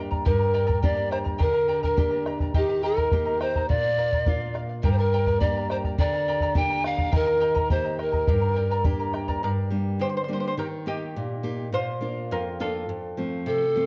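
Charango and nylon-string guitar open this melancholic, earthy Andean folk excerpt in G minor at 104 BPM in 2/4. The charango's shimmering double strings ring above the guitar's up-front, fingerpicked classical lines with audible finger squeak, while a round, close bombo keeps time until 9.4 s. A breathy, wooden pan flute with soft-attack vibrato carries the melody from 0.3 s, then the charango takes a solo over chords moving from Eb through Bb to F, and the flute returns briefly at the very end, all heard through a moderate recital hall reverb and worn, warbly cassette tape with pitch drift.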